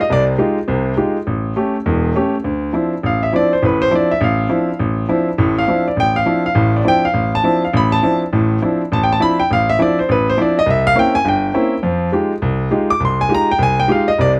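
A clear, intimate grand piano plays alone from the start in this spiritual, hypnotic jazz fragment, swinging briskly in 4/4 across a range from deep bass to bright treble, its natural, up-front sound carrying audible action noise under light reverb as the harmony moves through Fm9, A7, a long stretch on Dm9 and C7b9 before returning to Fm9 at 11.8 seconds.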